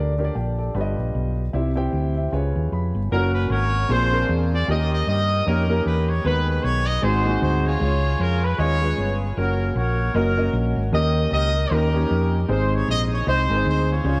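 Uplifting and jubilant, this uptempo gospel piece, cut from a longer performance, swings at 154 BPM in 4/4, with an intimate grand piano, its action noise audible under a subtle chorus, accompanying a round, dark hollow-body electric bass that sits up front. The piano plays a fill from 1.9 s, and at 3.1 s the music settles into F# major as a pop-style horn section takes the melody, ensemble-voiced with light vibrato and a touch of delay. A moderate plate reverb gives the mix a dreamy, reverb-soaked sheen that places the horns at a roomy distance.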